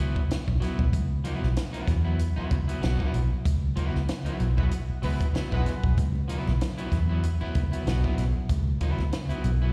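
A lightly swung 16th-note groove at 95 BPM drives this cool funk excerpt in C# minor over a C#m7 chord, with a dark, foam-muted fingered bass and a dry cocktail kit with a tight kick up front, a twangy electric guitar at the edge of break-up carrying slapback echo, a punchy horn section with octave doubling and light vibrato entering at 4.6 s amid a band accent, and low-tuned, thick-skinned congas joining distantly at 6.0 s, the whole performance heard as a live gig through the venue's PA with small-room ambience and recital-hall reverb.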